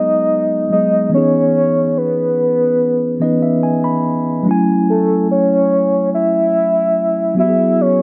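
A straight 4/4 pulse at 72 BPM carries this late-night, sensual R&B excerpt in C# minor: a mellow, clean tine electric piano, heard through its built-in speakers, plays accompaniment over G#m7, C#m9, F#m9 and Eadd9 and adds a fill from 2.8 to 4.5 seconds, while a soft, round, dark octave-layered synth lead carries the melody up front with chorus, tremolo, vibrato and tape echo inside a light reverb.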